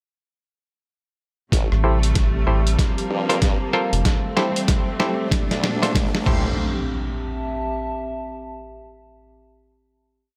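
A rubbery, hollow square-wave bass sits up front from 1.7 s, playing chopped phrases that answer a formant-sweep wobble bass whose modulated lines shift wobble speed over a swaggering, gritty glitch hop groove at 95 BPM in A phrygian, with swung 16ths and a pitched-down, tape-warm boom bap kit and thumpy broken kick driving a build through Am7, Gm11 and Bbmaj7. Overdriven, muted clav stabs with rootless voicings take a filter sweep while a lush bowed string section with vintage 12-bit grit and sidechain pumping holds sustained chords, and a riser from 4.2 s climbs over a drum fill that runs through the whole build. A warbling, nostalgic lo-fi pad carries the final chord until 9.1 s, with the riser and impact trailing off at 8.8 s.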